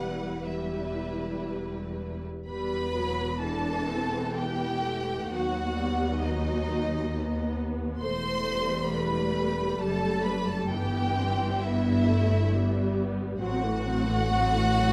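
The recording sits in a wet scoring-stage reverb as a slow, yearning and elegiac romantic movement for string orchestra in E minor unfolds at 66 BPM in a rubato 3/4, with a rich violin section carrying the vibrato-laden, soft-attacked melody over a distant second violin line, a dark, up-front viola section sliding with portamento through the accompaniment, and lush cellos in the background joining focused double basses on a smooth-topped bass, all bowed together throughout a passage drawn from a longer piece.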